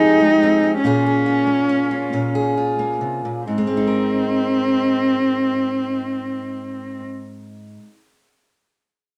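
A bowed solo cello carries the melody up front, its focused, vibrato-rich tone sporting a smooth top and a slapback echo, before it stops at 7.0 seconds. Beneath it, a fingerpicked steel-string acoustic guitar provides a warm concert-style accompaniment, with audible finger squeak, and plays on to 8.0 seconds. This nostalgic, peaceful acoustic folk fragment moves in a slow 6/8 at roughly 43-49 BPM in Ab major, tuned to A4 = 445 Hz, easing down through its opening 3.5 seconds over Fmadd9 and Bbm7 before settling on Abadd9, all captured in a dry, close 1970s-style studio sound with light reverb.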